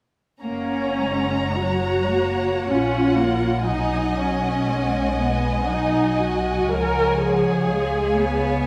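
Serene and warm, this slow romantic movement for string orchestra unfolds at 59 BPM in a rubato 3/4, resting in F# major and cut from a longer piece. Two violin sections carry the upper voices, one singing the melody high in its range while the other traces a second line just beneath, both bowed with vibrato and a focused, rich tone. The viola section sits closest and most up front, its soft-attack, expressive accompaniment giving the texture a lush center. Cellos provide a smooth, even bass line, joined in a lower register by double basses whose sound is focused with a smooth top. All five sections play together from 0.4 to 8.7 seconds, moving through F#, F#/A#, G#m7/B and arriving on C# at 6.7 seconds. The ensemble sits in a wet scoring-stage reverb with a 1.9-second decay that lends the strings a spacious glow.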